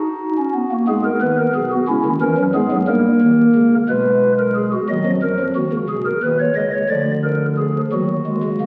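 A soft, hollow stopped-flute pipe organ sits up front from the very start, playing a solemn, contemplative baroque-style three-part fugue in a steady 6/8. Its mellow flute stops move through minor harmonies, passing from D#m through G#m and C#m to a D#7 before settling back on D#m near 7.9 seconds. The sound carries the crackle of a very old 78 rpm record and the lingering reverb of a recital hall, and the passage is cut from a longer piece.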